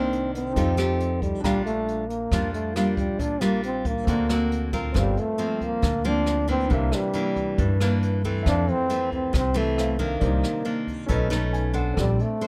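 A straight 4/4 bossa nova groove, played with brushes on a distant, roomy kit with a boomy kick and rim clicks, carries this relaxed, breezy excerpt, where an up-front trombone sings a whispered, intimate melody with light vibrato and scooped notes over bright, fingerpicked nylon-string guitar, a woody, growly pizzicato upright bass and a natural-sounding baby grand piano in the background that slips in a short fill at 11.3 s, in a dry sound.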